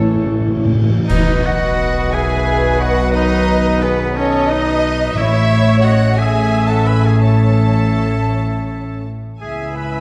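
Drenched in a dark, roomy scoring-stage reverb, this cut from a longer piece is a moving, tender cinematic film cue for orchestra in a flowing, rubato 6/8. A close, intimate section of studio violins carries the melody with a rich, lightly vibrated sul tasto tone. Around it weave three second lines: a bright solo oboe, an airy flute set at a distance, and a pure, floating symphonic violin section tucked into the background. Beneath them, woody violas with lush vibrato supply the accompaniment, and a mellow French horn section holds smooth-topped chords in the background. Soft-attack cellos and double basses give a deep, glowing foundation. Hard-mallet timpani open with an articulate fill and return at 5.2 seconds, while bright clash cymbals and concert bass drum land a close, dry accent at 1.1 seconds.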